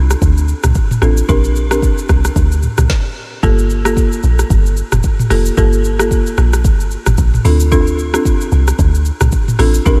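Lightly reverberant digital ambience surrounds this smooth, sultry afrobeats excerpt in G minor at 112 BPM with a swung sixteenth feel, where a deep, round log drum bass with a dark, percussive attack sits up front beside a produced electronic afro-pop kit of deep kick, woody snare, metallic hats, rim clicks, shaker and toms, while a dry, rustic marimba played with medium mallets joins at 1.0 seconds, and after a brief stop from 2.9 to 3.4 seconds the groove returns over Gm9 before settling back on Dm7.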